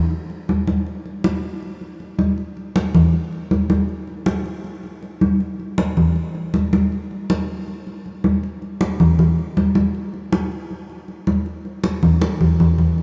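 A big, ambient reverb with a long tail of about 4.8 seconds fills the studio space, giving this short cut from a longer piece a spacious, live-room feel. It is a Latin percussion groove in straight 4/4, danceable and passionate in mood. Acoustic congas carry the whole passage from 0.1 seconds to the close at 13.0 seconds, sitting up front in the mix. Their tone is bright and medium-tuned, with a thin skin and the gentle touch of soft hands. A drum fill arrives at 12.2 seconds and runs to the end of the clip.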